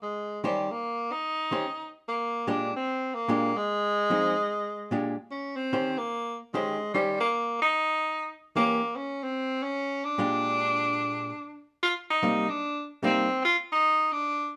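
Warm and swinging, this short jazz passage is cut from a longer piece and moves with a swung eighth-note lilt in four. A tenor saxophone carries the melody from the very start, its roomy, vibrato-laced tone sitting up front in a solo role. An amplified archtop guitar joins at 0.4 seconds to accompany, its dark, clean, picked hollow-body sound given a compressed, even quality. The harmony moves through Eb6, Bb6, Fm7, Edim7 and Cm7 before the guitar drops out at 13.3 seconds, leaving the saxophone to finish alone. A moderate studio reverb gives the pair a sense of space.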